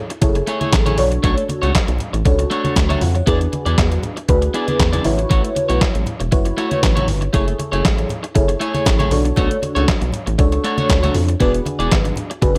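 Late-night and funky, this cut of early-eighties boogie funk moves at 118 BPM in a straight 4/4 over an F#m9, Bm9, E7 and A6 progression. An up-front, thumpy detuned 8-bit drum machine plays kick, medium-tuned snare, hi-hat and handclaps with gated reverb, beside a rubbery, hollow square bass and a lush, dreamy FM electric piano with a soft pad layer treated with chorus and phaser. Alongside them sit a slightly broken-up, picked electric guitar riff with subtle chorus and bright, close, dry congas tucked in the background, all set in a light room reverb.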